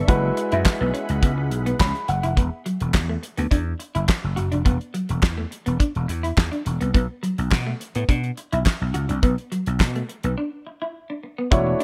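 Grand piano, a soft string machine and a clean electric guitar open this slick, funky slice of early-eighties boogie funk at 105 BPM in a straight 4/4, with slap bass and a damped seventies drum kit arriving at 0.1 seconds over an F#9sus4 chord. The piano sounds close and intimate, its action noise audible and its notes carrying a long sustain, and it plays a fill before dropping out at 2.4 seconds as the harmony moves to Esus2. The silky string machine, mellow and set back in the mix with an ensemble chorus, shares the piano's opening and returns with it briefly near the end. Through the whole passage the dark, picked guitar carries a riff through analog chorus, while the growly, punchy slap bass and the dry, airy drums, with a fat snare, tight kick, hi-hat and handclaps, sit up front. A crisp group handclap recorded in a live room adds human texture in the background, and a break arrives at 10.4 seconds, all bathed in studio reverb in this piece cut from a longer track.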